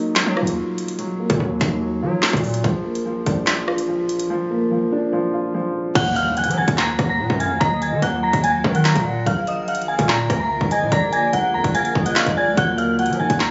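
A dark, boxy concert grand piano opens this cold, dark drill cut in Eb harmonic minor at 145 BPM in a half-time feel, joined at once by a produced drum kit with a hard-clipped kick, woody snare, crisp hats, handclaps, rim clicks and crash, and by a distorted, heavy 808-style bass with a saturated tone and a noise layer. At 6.0 seconds a faint electronic impact marks the shift as the piano drops out and an eerie, inharmonic FM bell takes the melody up front, with chorus, phaser and tape echo. A velvety detuned lead with vibrato and a cloudy, evolving granular pad follow in the background, and the piano briefly returns at 12.6 seconds, all heard through the compressed, muffled sound of a phone recording in a reverberant room.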